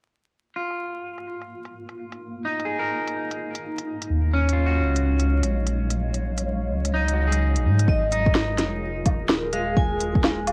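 A twangy, slightly broken-up electric guitar carries the accompaniment through this ghostly, melancholic future garage excerpt at 127 BPM with a swung 16th feel, its tone roughened by 12-bit sampler grit, sidechain pumping and tape echo. A cloudy granular pad fades in beneath it while woody snare, crisp hats and woodblock sit under sweeping low-pass filtering, and a dark, detuned, rumbling saw bass arrives at 4.1 seconds as the chords move from G#sus2 to D#m11. At 7.9 seconds an overdriven deep kick lands alongside a bright, airy vibraphone melody with tape echo, all wrapped in the character of a cassette home recording, vinyl crackle and light reverb.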